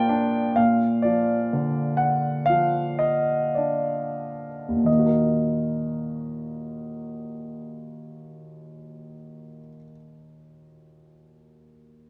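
A warm grand piano opens alone, present and up front, in a lyrical classical passage cut from a longer piece. The mood is wistful and reflective, in E-flat minor with a slow, rubato pulse in four that drifts between 42 and 64 BPM, easing down through the first 4.9 seconds. The harmony rests on B-flat at the start and settles onto E-flat minor at 4.9 seconds, where a second phrase begins. The piano spans a broad range from low E-flat in the bass to G high in the treble, its tone polished and warm. A moderate recital hall reverb surrounds the instrument with a gentle sense of space through to 12.1 seconds.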